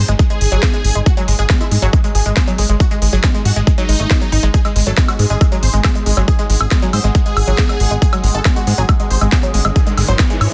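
Psychedelic trance at 138 BPM in a hypnotic, alien mood, this excerpt drives a punchy up-front kick and a plucky, funky analog bass under cracking snare, smooth hats and woodblock, while a huge, thick supersaw lead with phaser and digital delay, a woody wave-folded pluck riff with dub echo, and a deep, moody pad all pump to the sidechain, a resonant overtone-sweeping drone joins at 5.2 seconds, and a very quiet riser creeps in at 9.0 seconds within a dense, heavily limited modern master.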